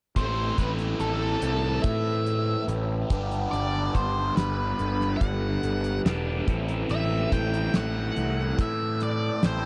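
A damped 1970s drum kit underpins this dark, mysterious slice of psychedelic rock, its fat snare, tight kick and hi-hat sounding dry and up front with a rolled-off top. A punchy fuzz bass with overdrive and a bright, double-tracked overdriven guitar riff under a phaser move from Am to G and back to Am, while a shadowy octave-fuzz lead guitar carries the melody through wah, distortion and tape echo. The sound is close and vintage, set in a small room, and the passage is cut from a longer piece, running from 0.2 to 9.7 seconds.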